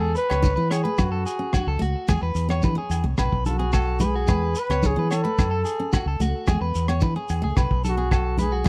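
Joyful and danceable, this short highlife guitar-band excerpt sets a veiled, bucket-muted trumpet with vibrato up front over a round, dark fingered electric bass, a picked steel-string acoustic guitar with finger squeak, and slightly broken-up electric guitar arpeggios through tape echo, while a gritty breakbeat kit with hi-hat, punchy kick and rim click joins at 0.2 seconds alongside grainy shekere, and ringing agogo bells and congas sit in the background of a dry, close 1970s-style studio sound.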